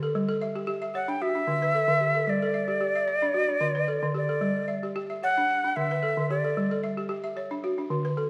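This West African traditional piece blends string and xylophone music, moving at a steady 112 BPM in a straight 4/4 feel in G lydian, with a hypnotic, warm mood. A balafon plays arpeggios from the start through 8.3 seconds, its woody, buzzing tone struck with hard rubber mallets and sitting up front, dry at the source yet carrying a tape echo. A jazz flute enters at 0.9 seconds with the melody in its upper register, airy and metallic with a soft attack, expressive vibrato and an up-front presence, before stopping at 6.8 seconds. The harmony alternates between G and D throughout. A reverberant recital hall surrounds the parts, and the production leans dark. The recording is cut from a longer piece.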